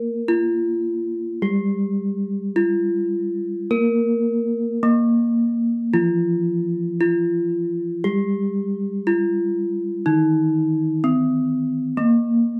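Ceremonial and shimmering, this short gamelan passage, cut from a longer piece, moves at a slow, straight 52-64 BPM in 4/4, set in a Bb pelog barang tuning. Two bronze metallophones play together from 0.0 to 12.6 seconds. The melody metallophone, struck with a horn mallet, rings out bright and airy near the front, carrying the tune between Bb3 and Bb4. Beneath it, the accompanying metallophone sits lower and softer, its padded disc mallets drawing a mellow tone whose paired tuning produces shimmering beats within a boxy small-room sound. The recording is dry and close, with the intimate character of a 1970s studio, so the metallic resonance of the bronze comes through directly.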